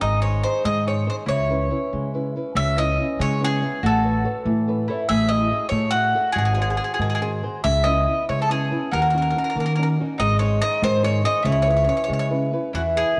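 A sunny, romantic Italian folk serenade in a rubato 6/8 opens with everything sounding at once: a bright, up-front bowl-back mandolin picks the melody on its double strings over a rounder second mandolin line, a small fingerpicked nylon-string guitar, and a woody, up-front pizzicato upright bass, all set in a concert-hall reverb and coloured by the worn, warbling pitch drift of old cassette tape in this passage cut from a longer piece.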